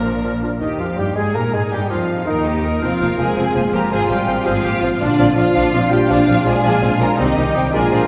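Up front, a focused double bass section anchors this dramatic, urgent classical excerpt in Eb major at 109 BPM in 6/8, as a dark, expressive violin section carries the melody from afar, a smooth studio violin section, airy flute section, distant oboe and bright clarinet add second lines, a lush viola section and soft-attacked bassoon fill the accompaniment above an intense cello section, mellow French horn and trombone sections hold sustained chords from 0.4 and 0.6 s, and a punchy trumpet adds stabs, heard from further back in a wet concert hall reverb.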